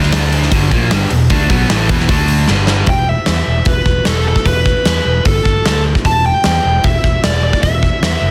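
Dense and heavily limited in a small room, this menacing, aggressive hard rock excerpt opens with a bright, cranked stack guitar and a very quiet, dark, sludgy second guitar picking an overdriven riff over amped, punchy fingered electric bass and a big, up-front acoustic rock drum kit with a soft-clipped kick; after a drum fill at 2.5 s, the two riff guitars stop at 2.9 s as a bluesy lead guitar, distorted and treated with slapback echo, takes the melody in its high register.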